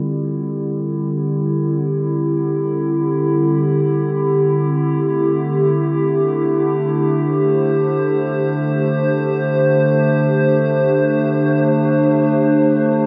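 A lone, warbling synth pad opens this melancholic, reflective ambient excerpt in free time, its detuned square and triangle tones sitting up front with slow attacks and long releases. The dark, lo-fi pad, thickened by chorus, holds sustained tones between D3 and C5 before settling onto a D7sus4 chord at 4.4 seconds. A huge, wet reverb with a very long tail surrounds it, and the slightly sharp tuning adds to its nostalgic, tape-worn character.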